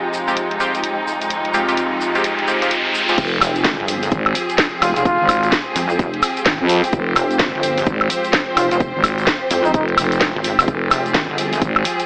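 Aggressive and swaggering, this bass house excerpt at 128 BPM in F minor, with a 62% swing on the 16ths, opens on a rich, bowed string section and a cloudy granular pad, both pumping, over a grainy tube shaker, an up-front house kit with cracking snare, crash, hi-hat and woodblock, and a nasal, band-passed chord stab treated with phaser and dub echo, while a background riser builds to the drop at 3.2 s, which brings an impact, a thick, growling FM bass, a punchy electronic kick and a detuned, saturated wobble bass, with a veiled, bucket-muted trumpet carrying light vibrato slipping in at 4.8 s, the whole track sitting in a lush hall with an AM radio tint.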